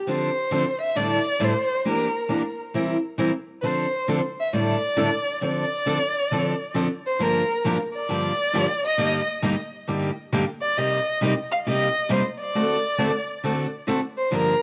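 A home cassette recording with wet studio reverb frames this swinging, virtuosic jazz excerpt at 135 BPM, where a dark, bowed violin with vibrato, portamento, a soft attack and tape echo sings an expressive melody over a bright, fresh-stringed picked steel-string acoustic guitar, both up front, as the harmony moves from D minor to G minor at 7.2 seconds.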